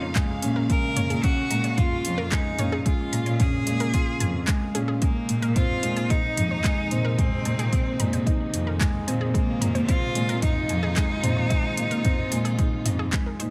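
Heard in a small room ambience, this hypnotic, moving stretch of piano and strings electronica pairs a bright, distant solo cello melody with a mellow felt-muted upright piano riff, veiled con sordino cello-section bass and dark chamber strings holding sustained chords in the background, both pumping with sidechain alongside a detuned sawtooth unison pluck whose arpeggios carry tape echo, while an overdriven deep house kit of metallic hats, handclaps and toms and an up-front electronic kick, both re-recorded in a large room, join at 0.2 s.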